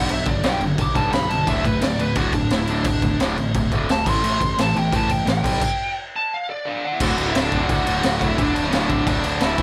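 A straight, driving 4/4 pulse powers this rebellious, energetic punk rock clip, cut from a longer piece. A raw garage drum kit sits up front with a boomy kick, a high-tuned snare and a crash cymbal, its gritty, saturated sound rolled off at the top. Beneath it, a double-tracked distorted electric guitar churns out a bright, compressed picked riff in a low register, while a fuzz-laden picked bass adds a growly, overdriven bottom. Over chords moving from G through D5, A5 and G/B, a dark, smooth overdriven lead guitar plays an up-front solo, with a stop arriving from 5.6 to 7.0 seconds. At 7.0 seconds the music lands on D for a new section, set in a light reverb.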